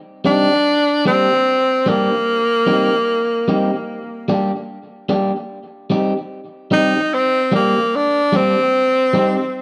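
Swung sixteenths at a relaxed 74 BPM in 4/4 carry this laid-back, serious reggae fragment in C minor, where a picked, compressed electric guitar at the edge of break-up accompanies up front over Cm and Gm from 0.2 seconds while a warm tenor saxophone with light vibrato and a roomy, distant tone, still placed up front, plays the pop-style solo melody, both parts trailing tape echo within a dry, close 1970s-style studio sound and a moderate booth ambience.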